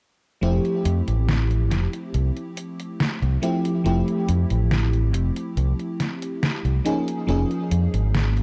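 Vaporwave with a nostalgic, woozy mood, this short cut from a longer piece moves at an unhurried, straight 4/4 pulse. An FM electric piano layered with a soft pad carries the accompaniment, its lush, dreamy tone detuned and tinged with a noise layer, struck with a fast attack that decays while phaser, subtle chorus and tape echo blur its edges. A fingered electric bass sits up front with a direct, warm sound, spanning F1 to F2. A detuned 8-bit digital drum machine supplies hi-hat and a medium-tuned snare with a sampler-style, tape-warm character. All three parts play together from 0.4 to 8.4 seconds, resting on Fmaj7 before shifting to Db6/F at 6.9 seconds. Light reverb and a dark, warm production give the whole a hazy, faded glow.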